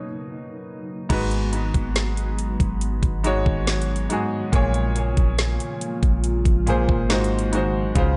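A clear, vintage-toned grand piano sits up front with tape echo, joined by a glassy, ethereal FM pad with ensemble chorus and its own reverb, holding slow-attack chords over a Cbmaj9 in a brief opening break. At 1.1 seconds a smooth, produced R&B drum kit arrives with a knocking kick, woody snare, metallic hats and crash, alongside a deep, round 808-style bass, as the harmony moves through Abm7, Bbm7 and Ab7. This short excerpt of contemporary R&B at 70 BPM has a romantic, tender mood in a dry, echo-heavy mix with a rolled-off top end.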